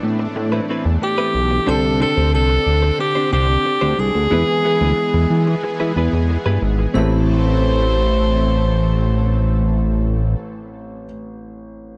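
A fragment of a dramatic, moody pop piece in A minor opens at a steady 91 BPM in a straight 4/4 with a concert grand piano, a lush unison pad and a fat analog bass together. The piano sits in the background, intimate and natural, with audible action noise and deep low notes. The pad is thick and warbling, a vintage detuned sawtooth with chorus, while the up-front bass brings a detuned, wave-folded sawtooth tone with a filter sweep. A clean, picked electric guitar, recorded direct and compressed, plays a background riff coloured by analog chorus and tape echo. At 1.0 seconds a punchy, bright alto saxophone takes the lead up front with light vibrato, scooped notes and tape echo, joined by a very quiet, inharmonic FM chime line with ensemble chorus and phaser. The harmony moves through Amadd9, Csus2 and E before returning to Amadd9, all in a dry, close 1970s-style studio sound, with the piano sounding alone at the end until 12.0 seconds.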